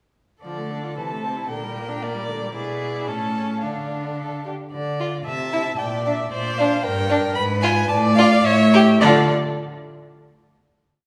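In a straight 2/4 pulse at 105-116 BPM, this brief, complete classical-period movement for string quartet in D minor feels restless and dramatic. All four bowed players begin together at 0.4 seconds and play through to 9.3 seconds. A statement of the opening material is repeated before a closing D minor chord at 9.0 seconds. The first violin carries the melody with a warm, smooth top, using vibrato, portamento and a soft attack. The second violin, played with similar vibrato and portamento, moves between sustained chords, short accented chords and chords in the rhythm of the tune, and adds answers at phrase ends. The focused, clear viola sits close, weaving flowing broken chords and a counter-melody among its chordal parts, while the rich cello stands up front with sustained bass on the beats, all set in a wet recital-hall reverb.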